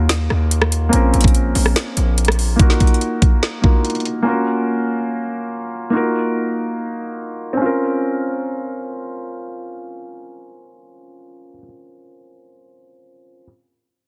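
A soft, intimate felt-muted upright piano opens this dark, melancholic half-time trap excerpt at 144 BPM in Bb minor, joined at once by a saturated, aggressive 808-style bass that drops out at 2.6 s and an overdriven kit of knocking kick, woody snare, rim click and metallic hats that stops at 4.2 s, leaving the low-pass-filtered piano alone over Ebmadd9, Bbmadd9 and Gbmaj7 chords through a filter sweep, all set in light reverb with a dense, heavily limited modern master.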